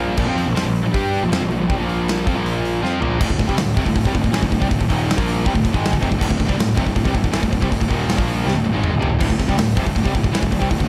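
Three picked electric guitars and a growly, fuzz-laden bass open this aggressive, relentless heavy metal excerpt together, with a big acoustic rock kit crashing in at 0.2 seconds. The loudest guitar is a scooped, high-gain riff, backed by a tight, bright distorted guitar in the background and a very quiet, double-tracked crunchy overdriven guitar that adds a warmer edge. The fuzz bass sits behind them, direct and amped with overdrive. Up front, the natural, big-room drums pair a tight kick with a medium-tuned snare, hi-hat, crash and toms, and a drum fill leads the riff from a Bb5 power chord into a D minor passage at 3.2 seconds. A second drum fill arrives at 8.5 seconds before the straight, driving pulse carries on to the cut. Light reverb and a dark production give the dense wall of guitars a heavy, shadowed weight.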